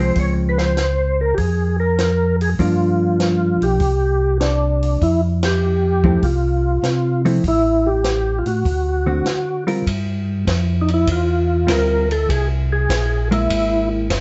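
A percussive, lightly overdriven tonewheel organ carries the melody through a slow rotary speaker with chorus vibrato and plate reverb, over a clean, picked hollow-body jazz guitar and a second tonewheel organ playing round, dark bass lines with audible key click. A compact cocktail kit with dark cymbals, a high-tuned snare and a tight kick joins at 0.2 seconds, swinging the eighths in a soulful, greasy soul jazz groove, and the band hits a shared accent at 5.3 seconds. Heard from further back in a moderately reverberant studio with a softened top end, this fragment of a longer piece moves to a new section at 9.9 seconds, ending on an augmented seventh chord.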